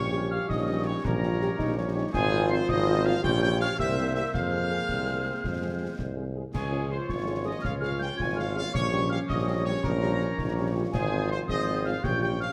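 A stern, martial military-style march for wind band in a straight 6/8, cut from a longer piece, where a mellow, distant trumpet section carries the melody over a clear, up-front tuba bass, with a wooden, vibrato-tinged piccolo, a clear woodwind section and a background euphonium on second lines, a very quiet dark trombone section holding sustained chords, a soft French horn accompaniment, and concert snare, bass drum and dark-toned clash cymbals entering at 0.5 s, all set in a roomy scoring-stage reverb.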